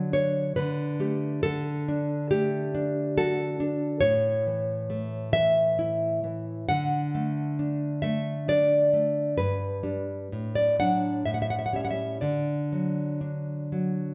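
Sunny and warm, this romantic piece for solo classical guitar unfolds in 3/4 with a free, rubato feel, cut from a longer work. The fingerpicked nylon-string guitar sits up front with a dark, full-bodied tone, an audible finger squeak adding intimacy as it moves through its D major harmonies to settle home at 12.2 seconds. A moderate recital hall reverb gives the instrument a natural sense of space.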